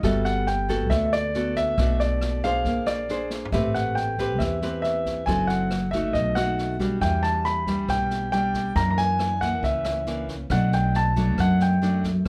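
An up-front grand piano carries the melody through this wistful, smooth bossa nova excerpt, over fingerpicked, classical-style nylon-string guitar with fresh strings, a woody, thumpy pizzicato upright bass and a natural small-room jazz kit with a boomy kick and rim clicks that drops in a fill at 3.3 seconds, set in light reverb as chords such as Gmaj9, Am9 and Em9 pass by.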